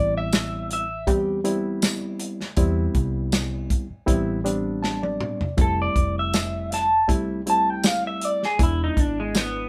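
A smoky, mournful soul blues at 80 BPM in A minor, this excerpt moves from Am7 to Fmaj7 at 5.6 seconds and E7 at 8.6 seconds over a straight-eighth feel with a light sixteenth-note swing. A dark, slightly broken-up electric guitar through a small old amp carries the melody up front with a phaser, dropping out after 1.1 seconds and returning at 5.6 seconds, while a barky, reedy electric piano, lightly overdriven through its built-in speakers, comps throughout and adds a fill just before the guitar comes back. Underneath, a round, foam-muted fingered bass and a punchy, tight-booth soul kit with tambourine and a drum fill sit in a moderate studio reverb, with the band playing live in one room.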